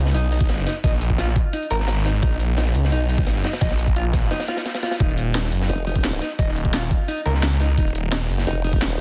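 Mechanical and tense, this excerpt of dark technical drum and bass in Eb minor runs at 173 BPM, driven by a snarling, overdriven sawtooth bass up front, with a clean, fingered electric guitar playing arpeggios through harmonic tremolo, sidechain pumping and dub echo, a knocking overdriven electronic kick, a cracking drum and bass kit with bright hats layered over a smooth, rolled-off acoustic breakbeat kit, a break at 4.3 seconds, and a chorused, formant-filtered wobble bass that surfaces at 5.7 seconds, all inside a digital ambience and a dense, heavily limited master.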